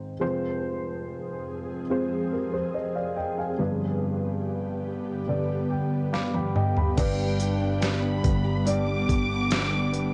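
This pop ballad excerpt, emotional and full of longing, opens on a dark upright piano that sounds worn and woody, slightly detuned, with its action noise audible up close. An ethereal pad of detuned sawtooth and triangle voices slides in under it at 0.9 seconds, blurred by ensemble chorus and its own reverb, as the harmony moves from F minor to G. A piano fill and a drum fill lead into the fuller second part, where at 7.0 seconds a foam-muted electric bass adds round, punchy low notes. A fingerpicked nylon-string guitar plays arpeggios through analog delay in the background, and a distant violin section carries a lush, bowed second line with vibrato and portamento. The electronic drum kit sits up front with a knocking kick, a deep snare and smooth hats, softened by cassette tape. Spring reverb and a home cassette recording that rolls off the highest frequencies give the whole a hazy, intimate character.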